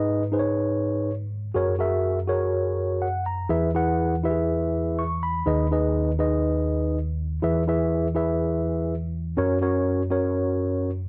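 Soul at 122 BPM in a straight 4/4, this short excerpt from a longer piece features a solo tine electric piano, mellow and clean, sitting direct and up front across a span from D#2 to C#6 in a light reverb. The joyful, uplifting mood rides chords moving from G#m through F#add9 to E, G#m/D# and F#, with a brief electric piano fill from 2.8 to 3.5 seconds leading into the second section at 3.5 seconds.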